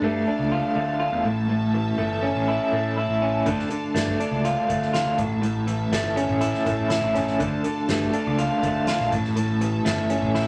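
A straight 4/4 pulse at 122 BPM drives this trippy, mysterious psychedelic rock passage, cut from a longer piece, where a dark, slightly broken-up electric guitar riff through a small old amp with tremolo sits up front, a growling, bright, overdriven picked bass holds the low end, and lush bowed symphonic strings with vibrato sustain chords beneath a Dm to A alternation, while a soft-mallet drum kit with a fat snare and boomy kick joins at 3.5 seconds in a moderate studio ambience.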